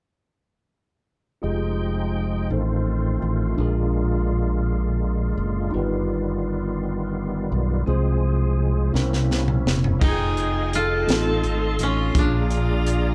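Recorded as a band playing live in one room with moderate studio reverb, this soulful, fervent slow gospel excerpt in 6/8 at 56 BPM in F minor opens with a mellow tine electric piano, a reedy tonewheel organ through a fast rotary speaker with chorus vibrato and key click, and a punchy, up-front fingered electric bass moving through chords such as Fm9, Bb7 and C7b9, before a crisp fusion drum kit with a high-tuned snare arrives with a fill at 9.0 s and a clear saxophone section with vibrato and a woody, fingerpicked koto take up the melody at 10.0 s.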